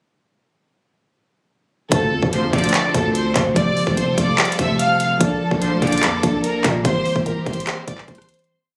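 A dark, woody violin section carries a looping, octave-doubled melody up front in this hard-hitting, dark trap hip hop piece in D minor at 146 BPM with a half-time feel, set over warbly lo-fi synth keys holding detuned chords with chorus, a clear string section pad in the background, a growling 808-style bass with pitch slides following the kick, a trap drum kit with a hard-clipped kick, metallic hats, handclaps, rim clicks and fast hi-hat rolls, and juicy resonant polysynth stabs at 2.3 and 5.6 seconds, the piece captured on a phone in a club-like room with compression before fading out from 6.8 seconds.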